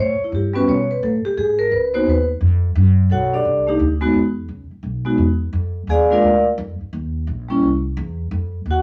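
A ringing, metallic vibraphone, played up front with medium mallets and its motor off in a boxy small room, accompanies over a woody, warm, pizzicato upright bass on steel strings in this swinging, late-night jazz excerpt at 173 BPM in 4/4, tuned to A4 = 445 Hz and set in a wet studio reverb as the chords move from A9 to Ebmadd9 across 8.8 seconds.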